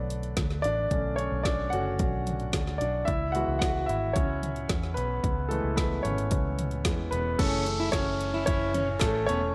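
A warm, intimate concert grand piano with audible action noise and long sustain opens this bittersweet, earnest piano-driven pop excerpt at 111 BPM, moving from Bm7 to C#m7 over a round, foam-muted vintage electric bass and a punchy, layered deep house kit with a woody snare and dark hats. A dark, full-bodied fingerpicked acoustic guitar riff and an electronic downlifter arrive at 7.4 seconds, joined briefly by barely audible hollow group handclaps, all within light reverb and digital ambience.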